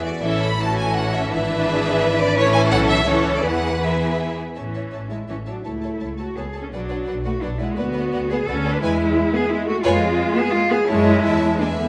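Spirited and graceful, this quick classical-period movement for string orchestra in A major moves at 170 BPM in a rubato 3/4, with a focused violin section singing the melody over a close, expressive second violin line, smooth-topped violas, warm cellos and double basses entering at 0.2 seconds, all set in a wet recital hall reverb as the harmony travels from A through Bm and E to F#m.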